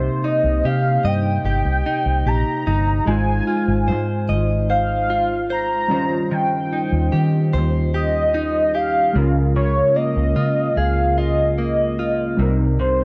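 Heard through a moderate small-room reverb, this wistful, lonely indie pop excerpt at 74 BPM in Bb dorian sets a velvety synth lead melody with lush chorus over a clean, direct-recorded electric guitar with subtle chorus and vibrato, warbling lo-fi synth keys carrying chorus and cassette-tape character, and a round, foam-muted fingered electric bass, while the harmony moves from Cm7 through Ab6, Eb13 and Bbm7/Db before returning to Cm7.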